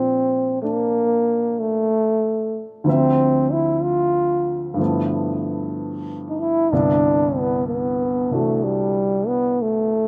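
Swung eighths ease along at a slow 62 BPM in 4/4 in this tender, intimate jazz ballad passage, lifted from a longer piece and moving from Bbmaj7 through Dm7 and G13 to Cmaj9. A breathy trombone carries the melody up front throughout its 10.1 seconds, with a smooth top, light vibrato and a slapback echo, while a dark, mellow grand piano accompanies close by, its natural tone carrying audible action noise. The sound is dry and open-air, recorded outdoors with little reverb.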